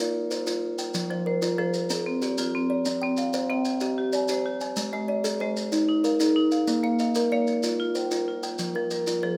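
A straight 12/8 pulse at 126 BPM in dotted quarters drives this hypnotic southern African traditional excerpt, built on an mbira-style interlocking cycle in F equiheptatonic tuning that moves through Bb, Fm, Cm and Ab. A woody, hollow-boxed kalimba with a ringing thumbnail pluck sits close and dry at the front, spinning arpeggios from F3 to Ab5+43c, and a hard-malleted, percussive marimba joins at 1.1 seconds with its own arpeggios across the same span. Grainy, mellow maracas sound distant in a large room, all set in a moderate recital hall reverb.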